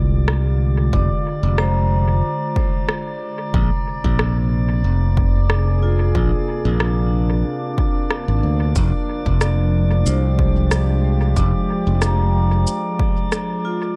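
Spacious and deep, this ambient dub excerpt rests on a bright, growly fingered electric bass sitting up front with tube saturation and a punchy, overdriven electronic kick, while a dry, close-miked vibraphone plays ringing arpeggios through tape echo, a warbling, nostalgic tape-like pad holds detuned sustained chords with chorus, an electronic rim click and shaker carry dub echo, and a faint glassy texture of drifting overtones hovers on a single high note, the bass dropping out at 12.6 seconds.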